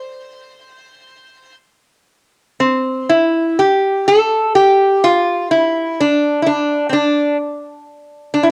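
In a slow, rubato 3/4 that hovers around 60-66 BPM, this short excerpt cut from a longer Celtic folk piece unfolds with a wistful, tender mood in C major, tuned slightly low to A4 = 439 Hz. A lone lap resonator guitar carries everything from 0.0 to 8.5 seconds, sitting up front in the mix and moving within the octave from C4 to C5. Its acoustic voice is metallic and nasal, shaped by fingerpicks and slide playing, with a touch of warmth beneath the bright edge. The piece shifts from its opening section into a second one at 2.1 seconds. Light reverb and a small room ambience frame the instrument, while the cassette home recording lends the guitar a tape-worn, intimate character.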